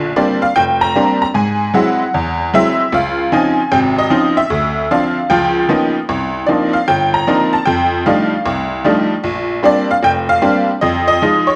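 Solo jazz with a sophisticated, relaxed air, this brief cut from a longer piece swings its eighth notes over a steady four-beat pulse. A lone tack piano carries everything from 0.0 to 11.6 seconds, its metallic, jangly voice sitting present and up front while ranging from deep bass notes to bright upper tones. The harmony is rich and colorful, opening on a Bb6/9 chord and moving through an augmented seventh, major ninth, eleventh and thirteenth chords before returning home and touching on an Fm7 at the close. The recording is bathed in a wet echo chamber reverb that lends a roomy trail to each percussive attack. A worn, warbling quality of old cassette tape adds warbly pitch drift, giving the whole sound a vintage, slightly wavering character.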